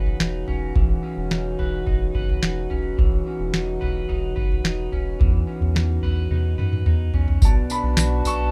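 A rough home-demo mix with moderate studio reverb frames this short, melancholic and hazy dream pop fragment, where a booming analog drum machine with a deep kick and tonal snare sits dry and up front, joined by tambourine and toms, over a round, dark analog bass. A distant, roomy brass ensemble holds mellow sustained chords while a twangy, slightly broken-up electric guitar plays arpeggios through lush chorus and delay. After a drum fill at 6.3 seconds, a soft, intimate felt-muted upright piano enters with a delayed melody at 7.4 seconds as the harmony moves to a minor seventh chord.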